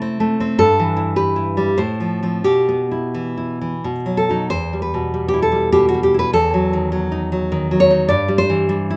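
A bright, fingerpicked nylon-string guitar with fresh strings and audible finger squeak sits up front in this passionate, wistful romantic piece for solo classical guitar, played in E minor in 3/4 with a rubato feel between 85 and 106 BPM. Spanning E2 to A5, the harmony moves from Am/C through Em/G and F/A to a B chord, and a second section from 4.5 s settles on Em, touching D#dim/E at 6.3 s before returning to Em/G. Cut from a longer piece, the recording has a rough home-demo mix and a wet studio reverb.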